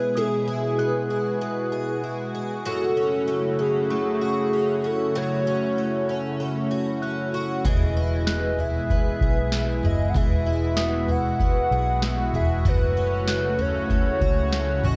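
Dreamy and blissful, this straight-feel dream pop excerpt opens with a hollow, woody clarinet-like synth lead carrying the melody over a lush, detuned unison pad and a shimmering, octave-doubled twelve-string acoustic guitar picking arpeggios, both lead and guitar trailed by tape echo. A mellow glockenspiel struck with rubber mallets rings softly in the background from 0.2 seconds, while the harmony moves between E and F#m7. At 7.6 seconds a booming analog drum machine with a deep kick, crisp snare and toms arrives, joined a moment later by a dark, round, foam-muted electric bass, all set in light digital ambience.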